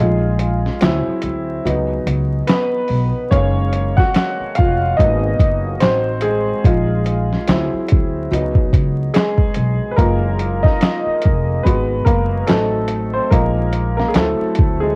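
Swung sixteenths in 4/4 carry this mellow, nostalgic lo-fi hip hop excerpt, where a worn, slightly detuned upright piano with audible action noise and long sustain plays a solo over sus, ninth and diminished chords from the opening break through 15.0 seconds, pizzicato upright bass adds growly, tube-saturated low end, and a muffled, compressed sampler-style kit of thumpy kick, snare, hi-hat and handclaps enters at 0.4 seconds, with the piano and drums tape-softened and the whole set in a small room with vinyl crackle and a homemade cassette character.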